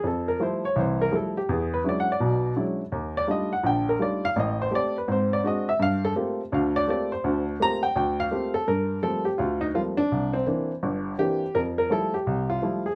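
A light reverb frames an intimate, natural-sounding baby grand piano that sits up front, its short sustain and audible action noise bringing the listener close to the instrument. This short solo jazz passage, lifted from a longer piece, has a cool, swinging feel in 4/4 with swung eighths. The lone piano carries everything, ranging from deep bass notes up into its upper register. The opening stretch moves through rich extended harmonies such as Fmaj9, E13 and Gm11 before a new section begins at 8.7 seconds. That closing phrase passes through C9 and settles back onto Fmaj9 by 11.5 seconds.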